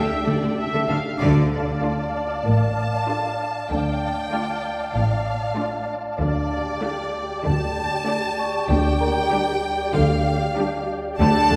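A straight 4/4 pulse at 96 BPM carries this uneasy, eerie cinematic passage in D harmonic minor, cut from a longer piece, where a close, expressive violin section sings the melody over a second, more distant violin line and a flickering, grainy, detuned pad that sustains slow-blooming chords with its own built-in reverb. At 0.3 s smooth violas, a bright cello section and lush double basses enter beneath, and the full band strikes an accent at 1.2 s as the harmony moves from Gsus2/D to Dm before returning to Gsus2/D at 6.2 s. From 2.5 s a delicate, bell-like celesta with soft felt hammers glints in the background, and the whole ensemble sits further back in the room within a long scoring-stage reverb.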